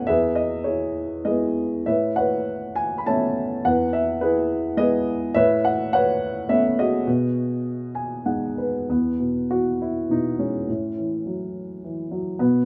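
Classical solo piano in E major, sunny and relaxed, moving in a rubato 3/4 at around 92-108 BPM, where a dark, woody upright piano sits up front with short sustain and light reverb, spanning E2 to B5 as its lyrical lines alternate between E and Aadd9 chords, adding a brief fill from 7.6 to 8.9 seconds over a B6 chord, then settling back on E and closing on A5 in this short extract cut from a longer piece.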